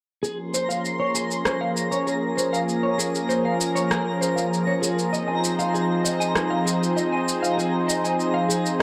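Sunset chillout in Bb minor at 98 BPM, this short excerpt from a longer piece has a relaxed, warm mood and a straight 4/4 feel. A lush, thick unison pad sits up front with sustained chords, its detuned sawtooth and square-wave layers, soft attack and chorus giving a bright, airy body. An electric guitar at the edge of break-up plays picked arpeggios, compressed and slightly gritty, shaped by harmonic tremolo, a low-pass filter and tape echo. Electronic shaker and rim click provide the drums, layered and tape-softened with a small-room character, while from 0.7 seconds a twinkling granular texture adds sparkling, octave-up FM shimmer with a slow attack and long release. The harmony moves from Bbm9 to Fm7 at 5.1 seconds, all set in a dark production with a wet hall reverb of 2.6 seconds.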